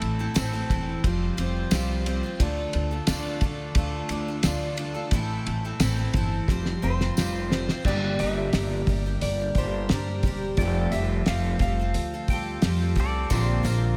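A shimmering, octave-doubled twelve-string acoustic guitar with slapback echo opens this reflective, wistful stretch of folk rock and heartland rock, joined from the start by a mellow, fingered electric guitar riff through analog chorus, a woody, thumpy upright bass with gut strings sitting up front, and a cloth-damped, thuddy drum kit with dark cymbals, a fat snare and a tight kick. A jingly tambourine sits distant in the background from 0.4 seconds, and a drum fill carries the music into its second part at 7.9 seconds, where the harmony moves from minor chords toward added-ninth colours. A clean, dark lap steel guitar takes the melody with its slide from 6.8 to 12.9 seconds. At 13.0 seconds a compressed pedal steel guitar, played with fingerpicks and volume swells, picks up a second line through analog delay. The whole is set in a small room with light reverb, and the passage is cut from a longer piece.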